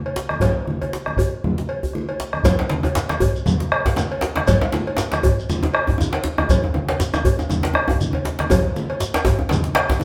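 West African traditional drumming from a drum ensemble, powerful and festive, moving at 119 BPM in 4/4 with a light swing on the sixteenths. Cowbell, djembe, bombo and congas come in almost together at the very start, the metallic cowbell joined by a deep, dark bombo that sits up front. One djembe is tight and cracking with metal rattles, close and dry and struck with hard hands, while the low-tuned congas have a thick skin and soft hands, sounding distant in a large room. At 2.4 s a grainy, mellow, compressed and saturated shekere joins, and at 2.5 s a second, medium-tuned djembe enters up front, played with hard hands, as the piece moves into a new section. The band plays live together in one room with a roomy studio reverb, and this short clip is cut from a longer performance.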